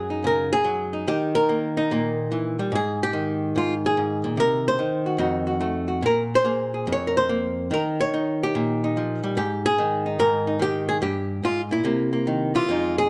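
Moody and cool, this short solo jazz passage is cut from a longer piece and swings at 145 BPM in 4/4. A single archtop guitar carries everything, its electric hollow-body tone dark, clean and compressed, picked and sitting up front in the mix with light reverb around it. The guitar moves through a colorful run of chords, opening on Gbsus2 and passing through Cdim and F7b9 before closing on Gm7 and C7#9. Its range stretches from F2 up to Db5, giving the lone instrument both low weight and high shine. The playing spans the full 13.1 seconds, forming a single section that ends at 12.7 seconds.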